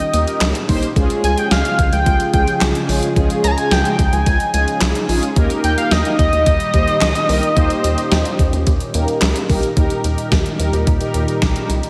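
Synth-pop with a wistful, nostalgic mood, set in a straight 4/4 and cut from a longer piece. A bold, retro octave-doubled lead carries the melody with vibrato, chorus, slapback echo and delay, then drops out at 9.2 seconds. Beneath it, a swirling, bright analog pad holds sustained chords in the background through phaser and chorus, while a mellow, brassy synth section adds round, detuned accompaniment. A rubbery, hollow square-wave bass bounces along underneath, and a clean 12-bit digital drum machine with a thumpy kick, medium-tuned snare, hi-hat and handclaps sits up front, overdriven and re-recorded in a large room. The harmony moves from Eb to Db and returns to Eb at 5.4 seconds, and a lush hall reverb gives the whole mix a big arena sound.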